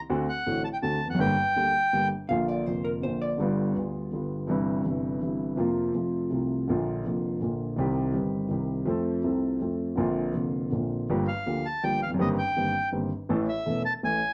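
Dramatic and passionate, this short tango fragment moves in a rubato 3/4 at 164 BPM, starting in Bb major and turning to G minor from 11.1 seconds. A grand piano carries the accompaniment throughout, its tone present and polished with a long sustain, sitting up front from the low bass to the middle register. The bandoneon takes the melody high in its range, reedy and dark with a vintage, band-limited character, stating a brief phrase at the opening and returning at 11.3 seconds as the harmony darkens. In between, a clean, picked hollow-body electric jazz guitar adds a short second line from 2.3 seconds, softer in the mix than the other two. A wet club reverb and a dark, warm production shape the whole, and the passage is cut from a longer piece.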